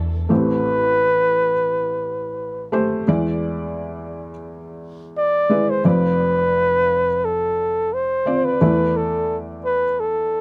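An acoustic folk-pop ballad, reflective and intimate, where a breathy, whispered flugelhorn carries the melody with vibrato and a jazz-tinged softness over a felt-muted upright piano whose hushed, vintage tone and short sustain move through Am7, E7, Dm7/F and E7sus4, both sitting up front in a dry, close 1970s-style studio sound.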